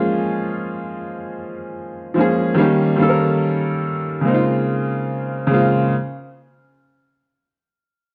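Swung sixteenths at a slow 72 BPM carry this nostalgic, melancholic hip hop fragment in Bb dorian, tuned slightly flat to A4 = 438 Hz, where an up-front, clear and woody upright piano with a vintage cassette-tape haze and a low-pass filter plays accompaniment from Db3 to Bb4, moving from Bbm7 to Eb7 at 2.6 s and settling on Bbm9 at 4.3 s, all set in a wet spring reverb.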